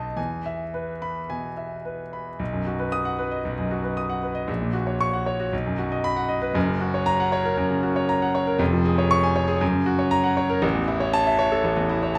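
A clear, intimate grand piano plays alone from the start of this brilliant, sparkling classical virtuoso study in B major at 116 BPM in 4/4 with a rubato feel, spanning E#1 to D#6 with audible action noise and sitting up front through close, detailed microphones in a moderate recital-hall reverb, as the passage, cut from a longer piece, moves into a new section at 2.4 seconds before breaking off at 12.2 seconds.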